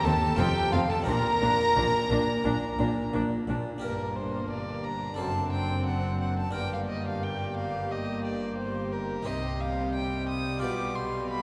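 A straight 4/4 pulse drives this brilliant, lively excerpt of a baroque-style concerto movement, where an up-front solo violin with a reedy gut-string tone and light vibrato carries the melody above a background violin section with a smooth top and a closer second violin section. A dry, round, close-miked harpsichord and a viola section fill in the accompaniment, while cellos and rich double basses anchor the bass, with every part playing from 0.0 to 11.4 s. The period-style ensemble sits in a wet cathedral reverb, and the music moves into a new section at 3.8 s.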